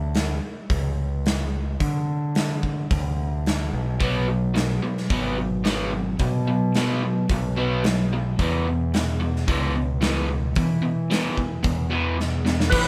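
Swaggering and driving, this classic rock excerpt at 110 BPM opens on a growling, overdriven fingered bass and a big, punchy drum kit with bright cymbals, before a bright, double-tracked overdriven guitar riff enters at 4.0 s over B5 and then E5 chords, a drum fill at 12.2 s sets up a gritty overdriven tonewheel organ that sounds a single B4 through a slow rotary speaker at 12.7 s, and the whole band plays live together in one room with moderate reverb.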